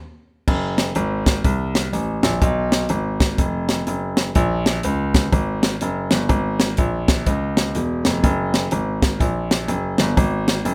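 Dry and rough like a home demo, this hopeful, uplifting slice of uptempo gospel swings at 124 BPM in 4/4, with a clear, intimate grand piano holding down the bass line in a deep low register, its action noise audible, while an airy, polished fusion drum kit with dark cymbals, a high-tuned snare and a punchy kick drives crash, hi-hat, kick and snare up front, both parts entering together at 0.5 s after a brief break.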